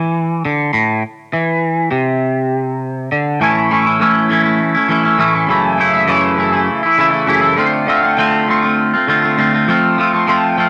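In a straight 7/8 pulse at 201 BPM counted in eighths, this hypnotic, hazy rock excerpt features a lone bright, clean, picked electric guitar with a twangy, flanger-tinged tone placed up front in light reverb, opening unaccompanied by chords before moving at 3.4 seconds through A, F#m7, Dm7 and F.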